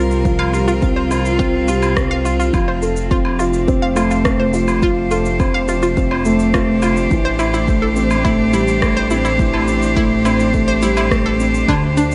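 A straight 4/4 pulse at 105 BPM drives this tender, luminous piano and strings electronica, cut from a longer piece, with a deep, layered electronic kick entering at 0.3 s and an overdriven electronic shaker, woodblock and rim click that sound re-recorded in a large room. A felt-muted upright piano plays a soft, boxy riff between D3 and A4, its thick felt tone intimate and touched by tape echo. Beneath it, a dark detuned saw bass rumbles and beats in the low register from F1 to D2, pumping through sidechain compression, while a string quartet holds sustained chords from G3 to C5 with light vibrato, airy sul tasto bowing and the same sidechain pumping. An analog pluck from 0.4 s spins bright, round arpeggios between D4 and F5, colored with chorus, ring modulation, a filter sweep, tape echo and sidechain pumping. The harmony moves from Csus4 to F at 2.5 s and settles on Am7 at 7.1 s, all set in light reverb and digital ambience with a soft-topped sound.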